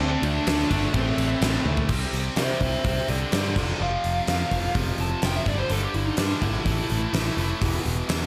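Hard rock with a menacing, driving feel, this short excerpt opens on a heavy high-gain guitar riff, double-tracked and distorted, joined by a tight distorted guitar in the background that drops out at 1.9 seconds. A barely audible overdriven tonewheel organ adds gritty, percussive sustained chords with vibrato for those opening moments only. A growly, punchy picked electric bass carries the low end, while a gated 80s drum kit sits up front with a fat snare, punchy kick and bright cymbals in an airy stone room, marking the shift with a fill at 1.7 seconds. A dark, overdriven lead guitar, present from the start, takes a solo from 1.9 seconds, its picked line carrying a slapback echo as the harmony moves from C5 through F, G5 and A5 to E5. The sound is polished, set in a studio ambience.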